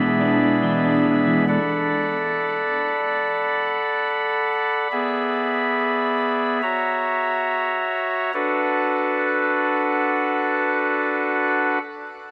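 This ethereal, melancholic dream pop fragment opens with a bright, twangy, slightly broken-up electric guitar picking arpeggios through a small old amp, coloured by analog chorus, delay and shimmer reverb, while a pipe organ on a soft reed oboe stop sustains chords with a baroque voicing and a touch of chiff. The guitar falls away at 2.1 seconds, leaving the up-front organ, bathed in its own shimmer, to carry the slow, straight pulse through chords moving from E7/B and Bm7 to F#7 before settling back on Bm7 at 8.3 seconds. A huge ambient reverb and a dark production give the whole fragment a hazy, drifting melancholy.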